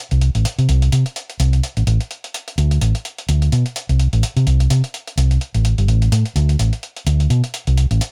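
A dark, round hollow-body short-scale electric bass sits up front through a low-pass filter sweep, carrying this funky, groovy filtered disco house cut at a swung 4/4, while a gritty, compressed, sampler-style electronic hi-hat plays lower in the mix, all inside a digital ambience.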